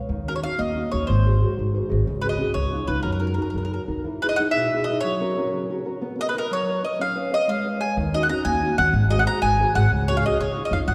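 An Italian folk serenade in 6/8, lively and romantic, moving at 123 BPM in dotted quarters with a rubato give to the pulse. A warm, picked mandolin carries the melody, its doubled strings round and up front. Beneath it a small-sounding nylon-string guitar accompanies throughout, thumb-plucked with audible finger squeak, and slips in a brief fill at 1.6 s. The pizzicato upright bass on steel strings is woody, dark and growly with a thumpy attack, dropping out after 4.0 s and returning at 8.0 s. The harmony moves through chords such as D#m7, G#7, C#sus4 and Emaj7, while a wet concert hall reverb with a 2.1 s decay gives the trio a church-like bloom in this section cut from a longer piece.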